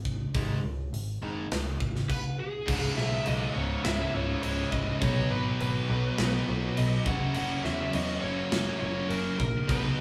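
A growly, punchy picked bass and a tight, polished metal drum kit with bright cymbals open this driving, heavy hard rock passage in C# dorian at 103 BPM, joined at 0.3 seconds by two picked, overdriven rhythm guitars (one crunchy, one hollow-bodied) sitting in the background. A dark lead guitar through a small cranked amp carries the melody from 2.1 seconds, and at 2.7 seconds a bright, double-tracked high-gain guitar adds a distorted riff as the chords move through C#m, B and F#. The band sounds live in one room, with the airy, big-room drums up front and a moderate studio reverb around the ensemble.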